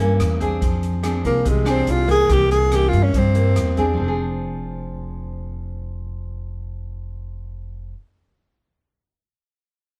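A breathy, close-miked tenor saxophone carries the melody in this intimate, smooth bossa nova excerpt, entering at 1.3 seconds with a clear, vibrato-laced jazz solo that sits up front. Beneath it, a fingerpicked nylon-string guitar plays warm, classical-toned accompaniment over chords moving between C7b9 and Fm6 in F dorian, at 143 BPM in a straight 4/4. A pizzicato upright bass with steel strings gives a woody, up-front low end. An airy, polished big-band drum kit adds hi-hat, rim click and a punchy kick, with a hall character, then drops out along with the saxophone at 3.9 seconds. Guitar and bass carry on into the second section, played live in one room with moderate studio reverb.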